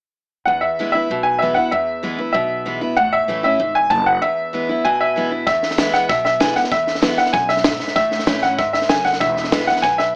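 A bright upright piano leads this upbeat, retro rockabilly clip, its brilliant, woody tone sitting up front with audible action noise and long sustain as it carries the melody high in its range. Beneath it, a picked steel-string acoustic guitar adds full-bodied dreadnought accompaniment, while a pizzicato upright bass with gut strings provides a thumpy, woody low end. After a break around 4.2 seconds, a compact cocktail drum kit joins at 5.5 seconds, its dry, high-tuned snare, punchy kick and hi-hat placed up front to drive the second half with a straight feel. The harmony moves between E and A chords, and the whole clip is cut from a longer piece. Light reverb and a small-speaker sound give the recording a retro character.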